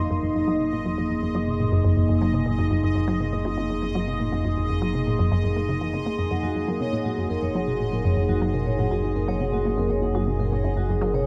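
Ambient, sequencer-driven space music in Gb lydian at 121 BPM, this cosmic, expansive excerpt sets a squelchy, resonant blip pluck riff with phaser and tape echo over an analog drone bass and an up-front, wave-folded pad of sustained chords under chorus and phaser, while a bubbling stepped-filter texture glints high above, a filter sweep moves across the synth arpeggio sound throughout, and a mellow, softly malleted vibraphone with fast motor vibrato joins with ringing arpeggios at 6.3 seconds, all within a vast, echoing cathedral space.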